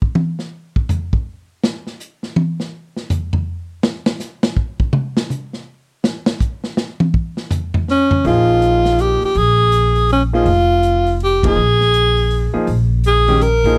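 A breathy alto saxophone, close-miked and intimate, carries the melody from 7.9 seconds with a whispered subtone, soft attacks, scooped notes and vibrato in this hypnotic, spiritual modal jazz excerpt cut from a longer piece. It opens on a drum solo from a vintage kit, dark and smooth with dark cymbals, a medium-tuned snare and a punchy kick, moving across hi-hat, ride, snare, toms and kick at a brisk 163 BPM in a swung 3/4. At about 8.2 seconds the upright bass enters, plucked and woody with steel strings, alongside a grand piano whose vintage tone and long sustain sit beneath the horn. The band settles on a Bb5 chord for the second section, marks an accent together at 11.4 seconds, and moves off the chord near the close. The recording is dry and closely miked, placing the saxophone, bass and drums up front with fine detail.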